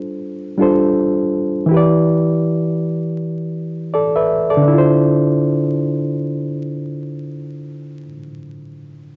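Vinyl crackle and a wet studio reverb frame this hazy, reflective hip hop fragment at 81 BPM, where an up-front electric piano, reedy and barky yet clean, heard through its built-in speakers and shaped by a low-pass filter, carries the accompaniment over a swung sixteenth-note feel in D dorian, moving from G7sus4 to Em7 at 1.7 seconds and on to Dm7 at 4.7 seconds before stopping at 9.2 seconds.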